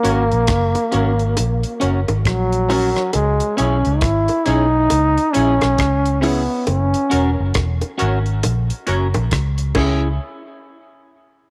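A scooped, vibrato-laden trombone opens this slow, meditative roots reggae excerpt up front, its solo line trailing dub echo while a twangy, clean electric guitar, a phaser-tinged chord stab and a round, foam-muted bass all sound from the start. Tight, high-tuned bongos join at 0.5 s, played with soft hands and set close and dry in the background beneath a damped 70s drum kit of tight kick, rim click, hi-hat and dark crash cymbal. The fingered guitar sits in spring reverb and dub echo, while the detuned, sawtooth-and-square stab gives short, bright filter plucks from the back of the mix. The punchy, amped bass stays prominent, anchoring a hypnotic swung groove that sways between two chords. The trombone falls silent at 7.5 s, leaving the band to carry the mood until the harmony drops away at 10.2 s in a brief closing stretch, all of it held in a studio reverb.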